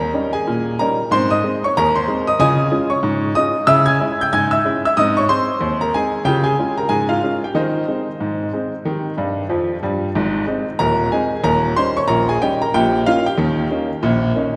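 A clear, intimate baby grand piano carries this jaunty, cheerful ragtime alone, sitting up front with audible action noise and a natural tone as it spans the low bass to the high treble in Ab major. At 93 BPM in 2/4 with a light swing on the sixteenths, the passage moves through chords such as Eb7, Db and Dbm before a fill at 9.2 seconds leads into a new section at 10.2 seconds. A long, wet church reverb surrounds the playing, giving the feel of a large hall, and the recording is cut from a longer piece.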